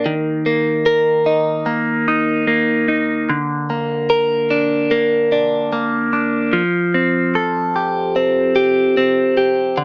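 Pop in an emotional, tender mood at a slow 74 BPM, this short cut from a longer piece features a solo clean electric guitar, recorded direct, picked and compressed, sitting up front with a phaser, light reverb and a small-speaker sound as it moves through Eb5, Bb/D and Fadd9 over about 9.8 seconds.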